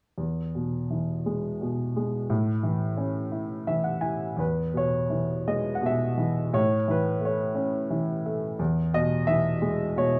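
Classical solo piano in E major, relaxed and sunny, drifts in a lyrical, rubato 3/4 at 87 BPM on a clear, woody, slightly detuned upright that sits up front in a small room with a dark, warm production, ranging from E2 to G#5, adding a brief fill from 3.3 to 4.4 seconds before the second phrase and settling onto an E6 chord at 8.6 seconds in this short cut from a longer piece.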